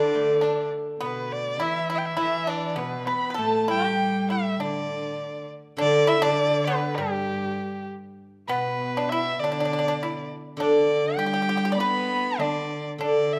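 Graceful and festive, this excerpt of Chinese traditional chamber music moves in a loose, rubato 2/4 feel. An erhu carries the melody, up front and warm, its smooth, even bowed line shaded with vibrato and portamento and a slightly boxy tone. Beneath it, a dry, percussive pipa plucked with fingerpicks weaves a second line, joined by a distant, earthy cello whose rich, nasal voice carries a light vibrato. A steel-string zither, also played with fingerpicks, supplies bright, ringing, silvery accompaniment and sits a touch forward in the blend. All four players sound throughout, and the music moves into a new passage at 8.2 seconds, all set in a moderate recital-hall reverb.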